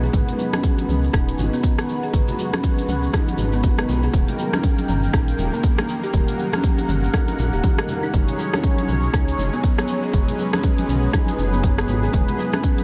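A swung 4/4 groove at 120 BPM, with 59% swing on the 16ths, drives this hypnotic, spiritual afro house excerpt in G# minor. It is cut from a longer piece. A punchy, overdriven electronic kick sits up front from 0.1 seconds alongside a layered house kit of bright hi-hats, rim clicks and toms, both carrying studio reverb. Ringing, softly played congas sound distant in a large room, entering at 0.3 seconds, while a grainy, band-limited cabasa adds a vintage texture. A deep, rumbling detuned saw bass anchors the low end, and a smooth analog pad with slow attack, chorus and a moving notch sustains chords over G#m7, D#, F#sus2 and E; both pump against the sidechain. In the middle register, a woody, close-miked kalimba plays plucked arpeggios with a hollow-box tone, trailing a diffuse ambient delay, until 12.6 seconds.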